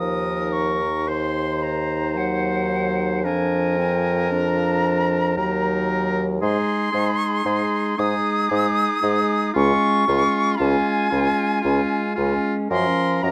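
A pure, silver concert flute carries the melody high above the ensemble, its vibrato shaping a serene, lyrical line in this slow romantic movement for wind quintet in Db major, moving at 57 BPM in a rubato 3/4. Beneath it a clear oboe sings a second line while the clarinet and a vintage-toned French horn fill in the accompaniment, and a warm bassoon sits up front on the bass, all five playing throughout this 13.3-second excerpt. Close, detailed microphones and light reverb frame the harmony as it moves from Ebm through Bb7/F and Ab before settling on Db and Gbmaj7.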